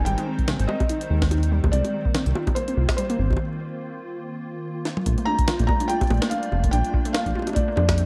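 A round, detuned analog bass sits up front in this glitchy, intricate IDM excerpt at 144 BPM in Bb major, with a swung 16th-note feel. A felt-muted upright piano carries an intimate melody through delay, with audible action noise, over a hollow, flute-like pad with vintage 12-bit grit and chorus, a warbly, lo-fi pluck playing arpeggios through tape echo, and a very quiet pulsing gated texture. A compressed, pitched-up jungle sampler kit of bongos, hi-hat, snare and toms enters at 0.1 seconds and is joined by a deep, tape-warm electronic kick from 0.4 seconds, with a break from 3.4 to 5.1 seconds and a drum fill at 4.9 seconds, all in a dark mix with moderate room reverb.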